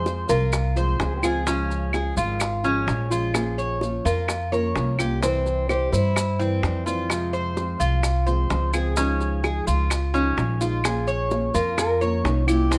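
A straight 4/4 groove at 128 BPM, built on tight, high-tuned bongos under soft hands, grainy maracas and woody claves set in the background, drives this danceable, sultry Cuban son and guajira passage, where a thumpy gut-string upright bass sits up front beneath a metallic, double-strung Cuban tres picking arpeggios, a small nylon-string guitar with audible finger squeak accompanying through Fm, Db, Bbm and C, and a dark, thumb-plucked nylon-string melody that pauses at 6.8 seconds and returns at 10.8, heard through close, detailed microphones with light reverb and a faint mains hum.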